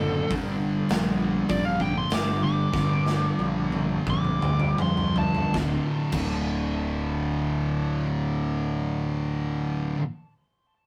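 A straight 4/4 pulse slows through the opening seconds of this brooding, ominous stoner and doom metal fragment, where a fuzz lead guitar with tape echo solos until 5.5 s over two dark, picked thick fuzz guitars holding a distorted riff in the background, a round, overdriven fingered bass up front, and a big acoustic rock kit with punchy kick, bright cymbals, snare, hi-hat and toms that plays a fill from 2.7 s before stopping at 6.3 s, captured in a rough rehearsal-room recording with light reverb.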